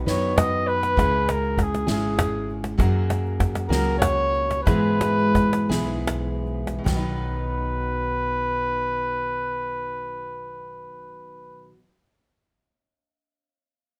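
A distant, roomy flugelhorn carries a classical-style solo melody over a peaceful, gentle acoustic folk excerpt in B major, moving in a slow 6/8 at 48-66 BPM and easing down in tempo during the latter part of its opening section. A bright, full-bodied picked steel-string guitar with audible finger squeak sits up front beside a woody, growly pizzicato upright bass, while a snappy, close and dry cajon joins a soft-mallet drum kit whose dark cymbals and fat snare add an airy touch of hall ambience. The drum kit drops out at 7.1 seconds and the cajon at 7.2, leaving guitar, bass and flugelhorn to carry the closing section over light reverb.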